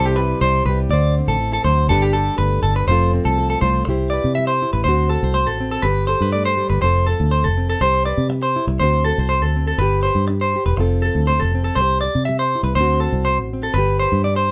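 A lightly reverberant room sound captures a small band playing live together in this sunny, carefree highlife excerpt at 122 BPM in C major, with a gentle swing on the sixteenths and a cycling C, D7, G, F progression that moves into a new section at 3.9 seconds. A clean, picked electric guitar plays arpeggios up front, sharing the foreground with a dark, round, foam-muted fingered electric bass that sounds direct and amped. Beneath them, a fingerpicked nylon-string guitar with fresh strings adds full-bodied, warm, classical-toned accompaniment.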